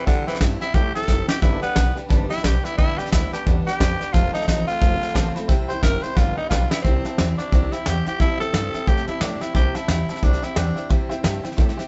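A growling, raspy tenor saxophone takes a solo from the start of this rowdy, rollicking rockabilly excerpt at 177 BPM in C major, swinging over a bright picked dreadnought acoustic guitar, a jangly detuned honky-tonk upright piano and a woody, thumpy pizzicato upright bass in the background, while an up-front soft brush kit adds fills at 1.1 and 6.2 seconds before the sax drops out at 10.9 seconds, all caught live in one room with light reverb and a top end that stops around 7.9 kHz.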